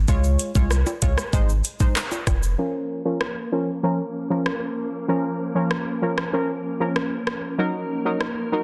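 Riding a straight four-beat dancehall groove, this tough, sultry excerpt opens on a deep, saturated sub bass, knocking electronic kick with metallic hats, handclaps, rim click and shaker, punchy sawtooth brass stabs through chorus and a low-pass filter, and close, hard-handed maracas and timbales, until at 2.6 seconds the bass and hand percussion stop, and from 2.8 seconds a glassy FM pad with ensemble chorus and sidechain pumping joins the brass with sustained chords under a filter sweep, all inside a dense, heavily limited modern mix.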